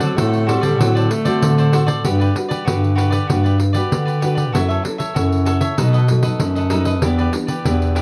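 A lively, sunny samba-choro excerpt in G major at 96 BPM opens with a breathy tenor saxophone, its scooped notes and vibrato heard in a jazz style, which drops out at 1.7 seconds. Underneath, an up-front, mellow bass clarinet carries the bass line with a smooth top, while a crisp, picked cavaquinho, a thumb-plucked classical nylon-string guitar and a jingly, close and dry pandeiro played with soft hands fill out the accompaniment. The harmony moves from D7 to Gmaj7, F#m7, B7 and Em7, all set in light reverb within a dark, warm production.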